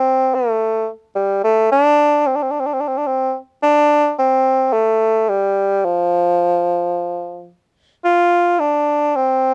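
A solo bassoon opens this short cut from a longer piece in the Mongolian folk tradition, its clear tone placed up front and present. The playing follows a classical style, with a soft attack and a light vibrato shaping each note as the line moves within its range from F3 to F4. The mood feels vast and galloping, carried by a straight feel in four. Around 3.6 seconds the music passes into a second section, and the bassoon carries on alone until the close at 9.5 seconds. The sound suggests a dry, close studio recording in the manner of the 1970s, touched by a light reverb.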